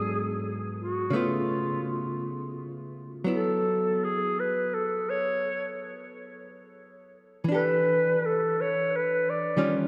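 Bathed in a vast, echoing cathedral reverb, this melancholic, wistful jazz fragment in F# minor drifts at a slow 57 BPM with a swung 4/4 feel. A clean, compressed hollow-body electric archtop guitar, picked and up front, supplies the accompaniment through chords such as G#m7b5, C#aug7, F#7sus4 and Em7. A warm, vintage-toned clarinet with a subtone, vibrato and soft attack carries the melody and takes a solo from 3.3 seconds.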